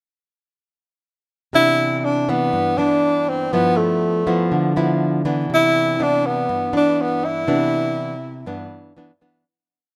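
Bossa nova in a romantic, sunny mood, this brief whole piece moves in a straight 4/4 feel through a single section that opens at 1.5 seconds. A fingerpicked nylon-string guitar sits up front with an acoustic, classical character, supplying thumb bass and syncopated plucked chords that move from Cmaj9 to G13 and back. A breathy tenor saxophone carries the melody in a jazz style, sounding mellow and subtoned with light vibrato and scooped notes as it builds its line from short hook phrases. The saxophone, also up front and slightly louder than the guitar, stays in a compact middle register and bows out at 8.7 seconds. Light reverb gives the recording a gentle sense of space, and the music fades out in its final two seconds, closing at 9.5 seconds.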